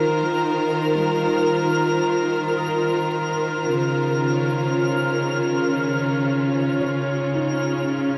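Ambient piece at 61 BPM in 4/4 with a straight feel, serene and spacious, heard here as a short fragment cut from a longer work. A clear studio string section sits up front, holding sustained chords from Db3 to C5 with light vibrato, a biting, intense bowed edge and a smooth top, bathed in shimmer reverb. Alongside it, a felt-muted upright piano plays very quiet, mellow arpeggios between G3 and Eb6, intimate enough that the action noise can be heard. A twinkling granular texture hangs on F6 with a slow attack and long release, its sparkling octave-up shimmer carried by its own reverb plus shimmer reverb. The harmony moves from a rootless Ab6 to Dbadd9 at 3.7 seconds, all within a huge, wet room with a 9.7-second decay and a dark, warm production.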